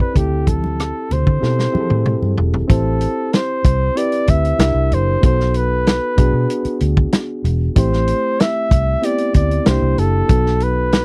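A breathy flugelhorn leads this lush 1970s-style soul excerpt, soft-attacked and up front, its jazz-style solo line marked by vibrato and scooped notes over a reedy, lightly overdriven electric piano heard through its built-in speakers. The drum kit is dry, saturated and gritty, with a medium-tuned snare, a tight kick and a rolled-off top, and it sits up front alongside hi-hat, rim click and toms. At 0.2 seconds a dark, foam-muted fingered electric bass enters, round and punchy, while damped, low-tuned congas with a thick skin sit in the background until 2.4 seconds. A drum fill carries the music from 1.4 to 2.7 seconds into a new section that moves through Am7, C9, B7 and E7/B in A dorian. At a straight 95 BPM in 4/4, the mood is smooth and bittersweet, captured in a dry, close 1970s-style studio sound with little reverb.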